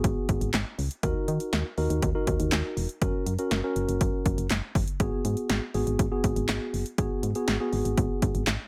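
Synth-pop in G# minor at 121 BPM, this cool, driving fragment of a longer piece moves from G#m7 through D#m and F# before returning to G#m7. A punchy analog drum machine of kick, snare, hi-hat and handclaps sits up front with gritty overdrive and a short room on the snare, clap and hats, while a round, dark FM bass with a fast, decaying attack holds the low end. A mellow, clean tine electric piano plays a warm, direct accompaniment on top, in a dry mix with little reverb.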